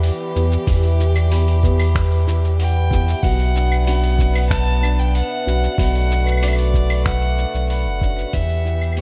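A delicate, wistful folktronica piece in B minor at 94 BPM opens with fingerpicked nylon-string guitar arpeggios, a ringing, metallic vibraphone line played with medium hard mallets and the motor off, and a dark, woody string quartet holding sustained bowed chords in the background, while a deep, round sine sub bass sits up front. A lo-fi, sampler-style kit of claves, finger snaps, hi-hat and shaker ticks along, muffled and pitched down, and a thumpy, tape-warm electronic kick joins at 0.7 seconds. At 2.6 seconds a clear, biting solo violin takes the melody with light vibrato and an intense yet smooth top, roughened by vintage 12-bit sampler grit. The guitar, vibraphone and violin are bathed in a diffuse ambient delay as the harmony moves from Em to Bmadd9 and back to Em. Vinyl crackle sits over the whole passage, and the excerpt fades out from 6.6 seconds.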